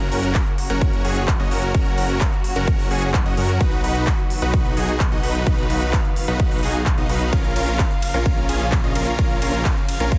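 Uplifting and euphoric, this festival progressive house excerpt drives at 129 BPM in F# major, moving from F# to B to A#m as a huge, bright supersaw lead plays a riff with dub echo and sidechain pumping over a thick, menacing detuned saw bass. A punchy, overdriven electronic kick enters at 0.3 seconds and sits up front beside a big-room kit of handclaps, crisp hi-hats and ride cymbal, while a veiled, con sordino string section holds sustained chords in the background. The sound is dry, dense and heavily limited.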